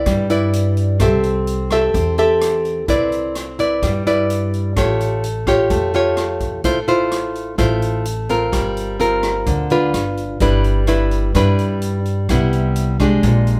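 A breezy, sophisticated bossa nova excerpt in straight 4/4, cut from a longer piece, with a bright, fingerpicked nylon-string guitar sitting small and up front as it comps through rich jazz chords from a rootless Cmaj9 to a closing Cmaj7. Underneath, a woody pizzicato upright bass on steel strings anchors the low end, while a swinging big-band drum kit enters at 0.1 s, quieter in the mix, adding hi-hat, rim clicks and a punchy kick. The trio plays live together in a large studio with moderate reverb, giving the sound a natural, roomy feel.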